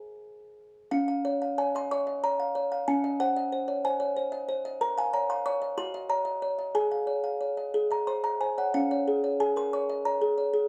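A classical lullaby for solo music box, this short passage feels innocent and tender, moving in a gently lilting 6/8 with a rubato give to the pulse. The music box carries everything alone from the opening to the close at 10.7 seconds, its delicate, tinkling plucked tones ringing from a large box and sitting up front. Its slightly out-of-tune quality and airy sparkle lend the tune a fragile, childlike charm across a two-octave span. The harmony settles into a tranquil phrase from 0.9 seconds, drifting through a soft minor shade before returning home. A moderate studio reverb surrounds the instrument, and the production has a dark, cozy cast. The clip is cut from a longer piece.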